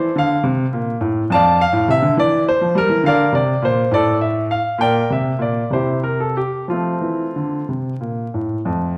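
Soaked in a wet recital-hall reverb and vinyl crackle, this brief excerpt of a baroque-style classical suite movement features a solo baby grand piano, polished and up front, spanning F2 to A5 in a radiant, dance-like 6/8 with flexible rubato, its harmony moving from F through Dm/F, Em7b5 and Bb to a chordless moment at 3.9 seconds before Bb69 and C lead back to F.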